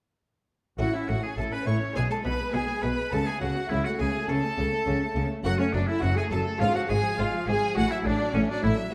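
A clear, distant oboe carries the melody alongside a smooth, vibrato-rich violin section, with a second violin section on a supporting line, while a lush viola section with portamento, a very quiet, lute-like buff-stop harpsichord, a focused cello section in the background and a bowed double bass section fill out this brilliant, lively baroque-style concerto excerpt, heard in a dark production with moderate concert hall reverb.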